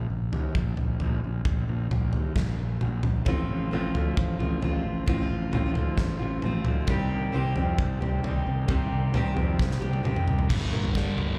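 Dark, cathartic quiet-loud alternative rock cut from a longer live club performance, where a growly, overdriven fuzz bass and a big-room rock drum kit with a punchy kick hold a half-time feel, a fingerpicked steel-string acoustic guitar joins at 3.2 seconds with arpeggios touched by tape and slapback echo, and after a drum fill the thick, distorted fuzz guitar riff comes in at 10.5 seconds.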